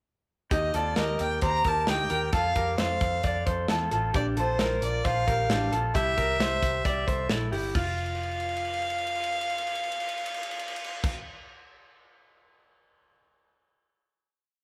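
Recorded live in one room with light reverb, this short, youthful and nostalgic jangly indie pop piece at 133 BPM sets an up-front, biting violin singing motif-based song phrases with light vibrato over a slightly broken-up, lo-fi guitar ringing picked arpeggios doubled in thirds, a round, foam-muted picked bass driving eighth notes, and an acoustic drum kit with a punchy kick playing a brisk backbeat through a pre-chorus moving from Eb to F, Bb and Cadd9 before a drum fill from 8.0 seconds carries the final note to its close.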